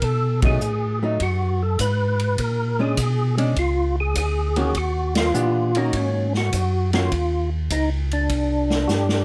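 Lightly reverberant, this late-night, bluesy soul jazz organ trio excerpt swings at 101 BPM in Eb minor, with a fat, percussive tonewheel organ carrying the melody through a slow rotary speaker and chorus vibrato, a flute-like second organ voice holding the bass line, a distant, roomy drum kit with dark cymbals and a boomy kick, and a compressed hollow-body archtop guitar comping from 0.4 to 7.1 seconds, punctuated by band accents at 0.3 and 5.0 seconds and a drum fill at 8.9 seconds.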